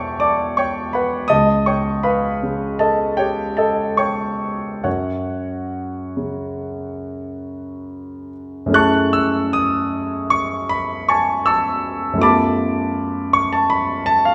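The music moves in a lilting 9/8 with a loose, rubato feel, its phrases stretching and settling unhurriedly. This is an impressionist classical piece for solo grand piano, hazy and nocturnal in mood, taken from a longer work. The piano sounds polished and up front, spanning from deep in the bass up into its bright upper register, with rich, colorful harmonies such as a shimmering Gmaj7#11 over E and an augmented chord that lends an unsettled glow. After 8.7 seconds the piece shifts into a new section built on F# minor ninth and G ninth colors. A lush recital hall reverb surrounds the instrument, giving it the resonant air of a church or concert hall.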